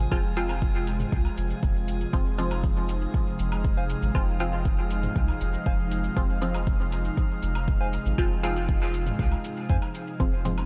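Dub techno in F minor at 119 BPM, nocturnal and meditative, where an up-front deep kick and metallic shaker and hi-hat drive a steady straight pulse beneath a round sub bass, a breathy pad with chorus and phaser, drifting glassy harmonics, and muted, detuned chord stabs colored by cassette tape and dub echo, all pumping to the sidechain, while distant woodblock and toms echo in the background and faint, warbling lo-fi synth keys join at 3.8 seconds, all in light reverb in this short cut from a longer piece.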